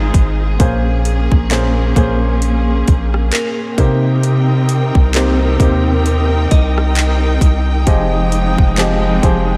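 A moody, late-night slice of contemporary R&B, cut from a longer piece, moves at an unhurried pace with a swung feel as a clear, natural-toned grand piano accompanies and a lush, distant string section with vibrato and portamento holds sustained chords from Ab6 through Bbm7, Cm7 and Fm7, the strings pumping under sidechain. Up front, a deep, mellow 808-style bass with long sine tones sits beneath a trap kit of hard-clipped kick, metallic hi-hats, handclaps and rim clicks with a tape-tinged edge. From 3.3 to 8.3 seconds a crystalline FM synth bell drifts in the background through chorus and analog delay, all set in a light digital ambience.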